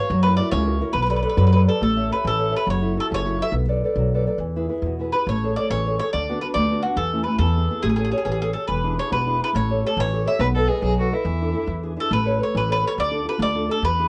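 Italian folk serenade in a straight 6/8, wistful and passionate, with a mellow, round mandolin picking the melody on doubled strings over fingerpicked nylon-string guitar with audible finger squeak and a woody, thumpy pizzicato upright bass on gut strings, while a warm bowed violin with vibrato adds a smooth second line from 10.4 to 11.7 seconds, all up front in light reverb and colored by worn cassette tape with a warbly pitch drift.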